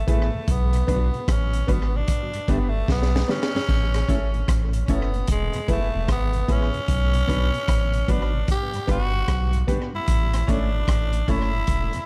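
A raspy, growling tenor saxophone carries the melody through dub echo over a round, deep sub bass that sits up front, while a crunchy breakbeat kit with a high-tuned snare and punchy kick adds tape-echoed grit, with a fill from 2.9 to 3.7 seconds. This sunny roots reggae excerpt, in a swung 4/4, moves through Bm, G, A and E. Filling out the echo-heavy mix are a very quiet, clean electric guitar, a tonewheel organ with key click, chorus vibrato, slow rotary speaker and tape echo, and clear baby grand piano stabs in the background.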